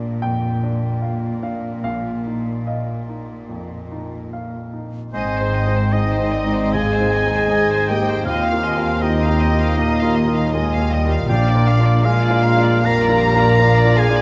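This tender, moving cinematic passage, cut from a longer piece, opens with a clear, present grand piano accompaniment over a dark, intimate cello section bowing sul tasto up front in the bass, in Eb major at a rubato 71-81 BPM in 4/4. At 5.1 seconds most of the ensemble enters. A violin section carries the melody with a soft attack and a pure, floating tone, while a clear solo oboe with light vibrato, a woody, distant second violin section, a mellow clarinet and an airy silver concert flute add second lines. A very quiet viola section fills in the accompaniment, a roomy French horn section holds sustained chords, and a bowed double bass section sits in the background of the bass. The harmony moves from Bb through Ebsus2/Bb to Ab and Ebadd9 before returning to Bb at 11.3 seconds, where a very quiet timpani note on Bb2, struck with medium mallets on calf heads, sounds close and dry, all set in moderate scoring stage reverb.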